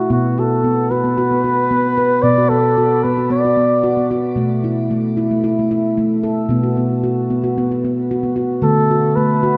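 A bucket-muted trumpet carries the melody up front, its veiled, vibrato-laden tone playing from the start to 4.1 seconds and returning briefly at 8.6 seconds, moving between F#4 and D5. This short excerpt is a gentle, hypnotic piece of meditative world music at 112 BPM in 4/4, set in B minor pentatonic with a straight feel. Alongside the trumpet, a stainless steel handpan plays ringing arpeggios throughout, struck with the fingertips across a range from B2 to B4 and sitting up front with a smooth, warm character. Both parts are washed in shimmer reverb and diffuse ambient delay, and the whole production sits in a wet scoring stage reverb with a dark overall color. The harmony moves from Bm through A5/B and B5 before arriving on D near the end.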